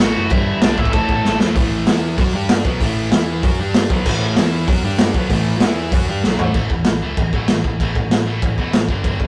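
A raw, up-front garage drum kit with a punchy kick, dark cymbals and gritty saturation drives this rebellious, energetic punk rock excerpt in A major at 193 BPM, where a bright, biting overdriven lead guitar flashes a melody only until 1.4 seconds, an overdriven electric guitar riffs until 6.5 seconds, and a tight, distorted guitar riff and growly overdriven picked bass push on through a rough rehearsal-room sound with light reverb, drum fills at 1.3 and 6.2 seconds marking the turns.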